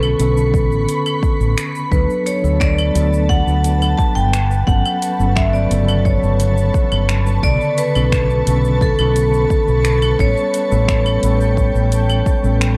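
A straight 4/4 groove of overdriven electronic kick, entering at 0.5 seconds, joins a deep house kit of claves, finger snaps, metallic hi-hats and shaker, all re-recorded in a large room. It anchors this blissful, relaxed sunset chillout cut from a longer piece. A bright, ringing vibraphone played with hard mallets carries the melody with delay and shimmer reverb over a mellow tine electric piano roughened by vintage 12-bit sampler grit, an ethereal, detuned ambient pad with chorus and octave-up shimmer, and a round, up-front fretless bass warmed by tube saturation, all moving through Bm9, D6, Gmaj9#11 and A9 in a dark production with a moderate plate reverb.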